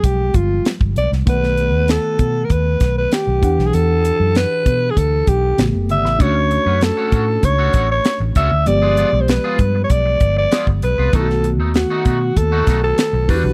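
A straight 4/4 groove at 97 BPM drives this polished 1980s jazz-funk pop piece, cut from a longer work and tuned to A at 441 Hz, with a glossy, urban mood. A tight funk drum kit sits up front, its high-tuned snare, tight kick and hi-hat sounding dry and airy, while a vintage muted fingered electric bass adds a dark, round, foam-muted low end. A worn tine electric piano, slightly out of tune and lightly overdriven with analog chorus through its built-in speakers, accompanies through changes such as G7b9, B7, Em9, A9 and Dmaj7. The breathy alto saxophone carries the melody as an up-front pop-style solo, raspy and gritty with vibrato, punchy attack and a smooth top. At 6.2 seconds a picked, twangy electric guitar at the edge of break-up joins with a riff, touched by subtle chorus and sitting low in the mix. The whole has the small-room ambience of a close 1970s-style studio recording.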